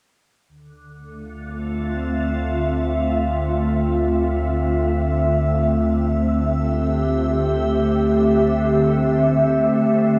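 A home cassette recording soaked in wet spring reverb and digital ambience frames this serene, spacious ambient fragment, cut from a longer piece and resting on a single Dm7 chord. A deep, round sine sub bass holds a low D from 0.5 seconds. At 1.2 seconds an up-front, ethereal FM pad with glassy tone, slow attack and long release spreads sustained chords through ensemble chorus, shimmer reverb and cassette tape color, and at 4.3 seconds a very quiet, organ-like drone joins it as a detuned, wave-folded sine unison that slowly evolves.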